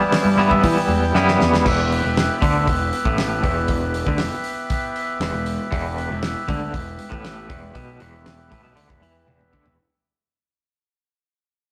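A twangy, bright tremolo electric guitar riff leads this hypnotic, dark psychedelic rock fragment in E minor at 118 BPM, over reedy, nasal harmonium chords, a punchy fuzz-overdriven picked bass and a damped 70s drum kit with a fat snare and dark cymbals. Very quiet congas join at 0.4 seconds and return at 6.5 seconds, and drum fills close each section. A fade-out runs from 1.7 seconds, and the whole piece carries a rough, tube-saturated rehearsal-room sound with moderate stone-room reverb.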